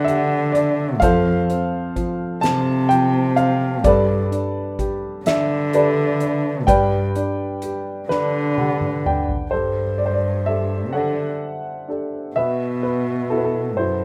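Hopeful and intimate, this short excerpt from a longer acoustic folk-pop ballad moves at a slow 42 BPM in a straight 6/8, in G major, with a rough home-demo feel and small-room ambience. A woody, slightly detuned upright piano carries the melody up front with audible action noise, while a dark, close cello plays the bass line with vibrato and an airy sul tasto bow. A soft-mallet drum kit with a fat snare and punchy kick plays from 0.1 s. The drums and piano each play a fill from 8.1 s, and the kit drops out at 9.5 s as the second section begins.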